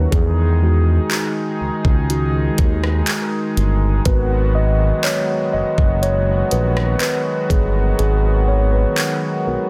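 A mellow tine electric piano opens this brief, moody contemporary R&B passage, taking the featured role from the first moment over a warm analog pad and a smooth synth bass that sits up front. At 61 BPM in straight 4/4 and G# minor, the harmony moves from Emaj7 to G#m7 at 4.1 seconds, giving the piece a slow, longing feel. The pad is wave-folded and vintage, with a slow attack and a warbling chorus, while the bass blends sawtooth and triangle tones with a fast attack and sustained notes. An electronic, produced drum kit enters at 0.1 seconds with a knocking kick, warm hi-hats, handclaps and rim clicks, carrying the character of a small room and placed close to the listener. The kick drops out at 8.0 seconds, and the clean, direct electric piano carries on to the close. The mix is dry, dense and heavily limited in a modern style, and the clip is cut from a longer piece.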